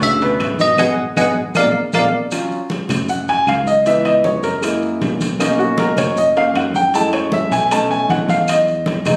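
Afro-Cuban jazz at 156 BPM in 4/4, driving and fiery, cut from a longer piece. It opens with a bell-like tine electric piano carrying the melody with a subtle chorus, over a dark, breathy trombone line touched by slapback echo and set in the background, both stopping by about 2.1 seconds. A clear, up-front baby grand piano accompanies throughout, with a growly, punchy fingered bass underneath, while ringing congas, grainy maracas, metal-shell timbales and very quiet woody claves fill out the percussion. A band accent and a drum fill close the opening stretch, and at 2.3 seconds the grand piano takes a solo over shifting jazz harmony that runs from Dbadd11 through to Emaj7. The sound carries a club-like room reverb and compression, recorded on a phone in the room.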